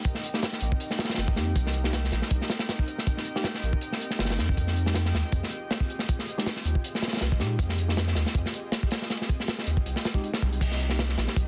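A crunchy, swung breakbeat kit drives this atmospheric, nostalgic drum and bass and jungle excerpt at 159 BPM in C minor, its gritty, saturated hits sitting up front with dark cymbals, a tight kick and a medium-tuned snare, joined at 0.6 seconds by a deep, thick sine sub bass. A very quiet, mellow tine electric piano adds stabs over a Cm7 to Fm9 progression, while a calm, glassy texture of drifting overtones, softened by chorus and reverb, hovers in the background until 10.6 seconds. The mix is dense and heavily limited.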